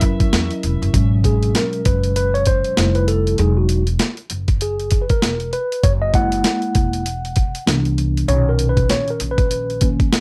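A lightly reverberant, cut-from-a-longer-piece slice of cool, mellow jazz-hop at 98 BPM in G# minor, with a swung 16th-note feel. A gritty, compressed sampler-style boom bap kit sits up front with a thumpy kick, a medium-tuned snare and hi-hat, while a woody pizzicato upright bass on steel strings anchors the low end. A clean, mellow tine electric piano, heard through its built-in speakers and bathed in plate reverb, takes a solo from 0.9 seconds to 10.2 seconds over chords moving from G#m7 through Fmaj7, Emaj7 and F#9 to Cmaj9 and Bmaj9.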